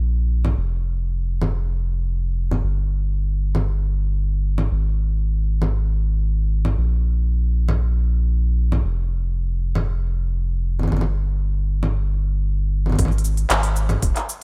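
A round, deep analog bass opens this delicate, pastoral folktronica fragment, sitting up front between Eb1 and Bb1 at a straight 116 BPM in 4/4. From 0.4 seconds an organic electronic drum kit of congas, handclaps, smooth hi-hat and shaker comes in close, and at 13.0 seconds a soft electronic kick joins it for a brief closing section, both drum parts overdriven and re-recorded in a small room. The sound is dry, with a faint mains hum beneath.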